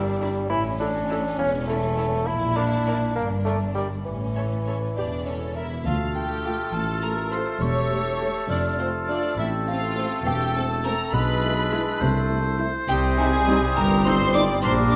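A playful, whimsical cinematic film cue in a straight 6/8 at 68 BPM, with a magical, sneaky mood, cut from a longer piece. Lush bowed string sections carry it from the opening: a rich, smooth violin section sings the melody, a distant, expressive violin section adds a second line, and a background viola section fills in the accompaniment alongside a roomy, softly attacked bassoon. Underneath, a focused cello section and a double bass section with gentle portamento anchor the low end. At 5.0 seconds a delicate, bell-like celesta joins the melody with a sweet sparkle, and from 5.9 seconds the woodwinds join with second lines from an airy, distant flute, a clear clarinet and a solo oboe, while a dark, punchy tuba reinforces the bass. A very quiet, mellow French horn section adds sustained chords from 6.2 seconds, and the harmony drifts through minor shadings from Dm to Am before closing on Cm, all set in a moderate scoring-stage reverb.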